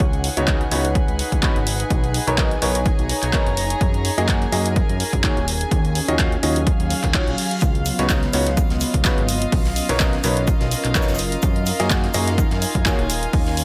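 A joyful, euphoric piano house groove at 126 BPM in Db mixolydian opens on a dry, overdriven electronic kick sitting up front, with handclaps and hi-hat from a punchy analog drum machine, a fat, nasal sawtooth bass that pumps against the kick, sustained chords from a soft-attack studio violin section, and an airy, breathy chorused pad. At 0.4 seconds a clear upright piano enters with a woody, intimate riff, its action noise audible and its notes trailing through a digital delay over lush ninth chords. A background reverse cymbal enters at 6.9 seconds, and from 7.6 seconds a very quiet big-room rock kit adds snare, hi-hat and shaker beneath the mostly dry mix.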